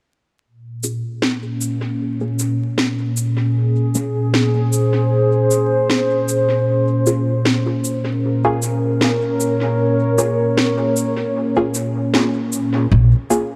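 A hazy haze of vinyl crackle and a huge ambient reverb surrounds this spacious ambient dub fragment, cut from a longer piece and set in Bb minor at 77 BPM in 4/4 with a light swing on the sixteenths. A warbling, nostalgic pad of detuned sawtooth and triangle tones sits up front from 0.7 seconds, holding a Bbm7 chord with a slow attack, long release, chorus and its own reverb for a mellow, vintage, lo-fi glow. Just behind it, a muted, deep chord stab built from detuned sawtooth and pulse waves plucks in short, fast-decaying hits, coloured by phaser, lush chorus, cassette tape grit and dub echo, while a filter sweep runs across it through the section. An electronic cabasa and a woody, overdriven snare drum keep the groove up front, with small room ambience and dub echo trailing behind them. Near the close, at 12.9 seconds, an upright bass with steel strings drops a single dark, pizzicato Bb low and up front.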